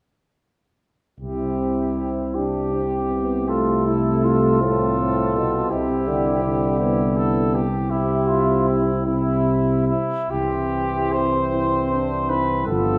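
At 1.2 s the whole brass band enters together in a serene, tender hymn-like classical passage in C major, moving slowly with rubato in 6/8: a distant cornet carries the melody with light vibrato and a soft attack over a roomy flugelhorn second line, while a mellow trombone section and a warm euphonium accompany in the background, a smooth-topped tuba anchors the bass up front, and the recital hall reverb lingers around them until the cut at 13.0 s.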